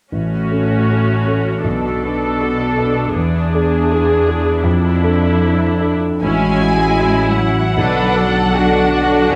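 Tender and uplifting, this short, rubato cinematic cue is cut from a longer orchestral score. It opens with a natural-sounding grand piano, up-front muted violas and dark, veiled cellos with soft attacks. At 6.2 seconds, close con sordino violins take the melody over mellow French horn chords and a lush bowed double bass section, and a distant second violin line joins in the background at 7.8 seconds, all within a moderate scoring-stage reverb.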